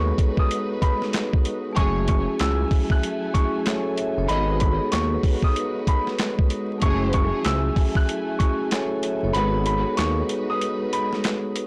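A woody upright piano melody rings out high over metallic, close-miked vibraphone chords colored by cassette tape, bowed strings holding expressive sustained chords, and a smooth, up-front synth bass with tube saturation, all moving between G#m7 and F#m9. At 0.2 seconds a gritty, pitched-down sampler-style kit joins at 95 BPM with a swung 16th feel, bringing a thumpy kick, high-tuned snare, handclaps and hi-hat, while soft sul tasto string stabs with digital delay drift through the middle. This reflective, gritty boom-bap fragment has a blown-out, overdriven sound with vinyl crackle and light reverb, and the kick drops out from 9.3 seconds.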